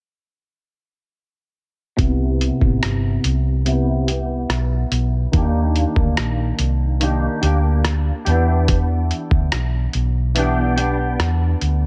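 Dreamy and sunny, this short indie and bedroom pop fragment settles into an unhurried, straight 4/4 groove cut from a longer piece. A clean, twangy electric guitar carries the chords from Cmaj7 to Ebmaj7 to Em7, its tone softened by ensemble chorus, vibrato and a low-pass filter that sweeps across its whole run from 2.0 to 11.9 seconds. Beneath it, a hollow-body short-scale electric bass, played with the fingers, sits low with a dark, round, amped sound. The lo-fi sampler-style kit of hi-hat, rim click and thumpy kick sounds pitched down, muffled and tape-warm, with a compressed punch. The dry room and up-front placement of all three parts give the recording a close, intimate feel.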